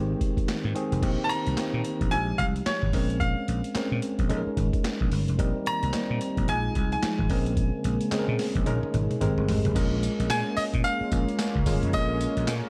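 A worn, slightly out-of-tune tine electric piano with light overdrive and a growly, punchy slap bass open this bouncy, confident new jack swing groove in Bb dorian at 110 BPM, joined at 0.2 seconds by a gritty, pitched-down sampler-style drum kit with a thumpy kick, high-tuned snare, handclaps, hi-hat and tambourine. From 1.2 seconds a brilliant, intimate baby grand piano carries the melody up front with audible action noise and digital delay, and a detuned sawtooth pad with chorus settles into the background at 5.4 seconds. A drum fill marks the move into the closing section at 9.8 seconds, all within light digital ambience, in this excerpt from a longer piece.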